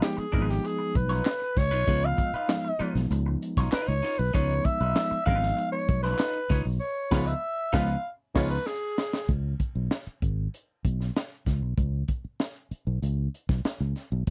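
Funk in Db mixolydian at 97 BPM, energetic and close in a dry 1970s-style studio sound, led by a growling, raspy alto saxophone solo up front over a crunchy breakbeat kit with dark cymbals and a punchy fingered bass, with twangy phased electric guitar, barky overdriven electric piano stabs with fast tremolo, and hollow group handclaps until 6.3 s; a distant horn section joins in the background from 7.1 s amid a band accent, followed by a drum fill, and drums and bass carry on alone from 9.3 s in this excerpt cut from a longer piece.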